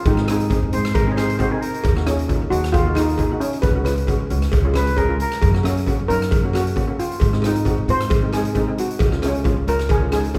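Calypso at 134 BPM with a light swing, sunny and festive, cut from a longer piece and set in a moderate concert-hall reverb. A shimmering lead steel pan struck with hard rubber sticks carries the melody over boxy cello pans, while a woody pizzicato upright bass with steel strings and an up-front drum kit of boomy kick, hi-hat and rim click hold the groove, with a distant cowbell in the background. A bright, reedy concert flute with vibrato adds a second line in two short phrases, first from 0.7 to 2.0 seconds and again from 4.7 to 5.5 seconds, over chords moving from G# through D#m7 and F# to C#.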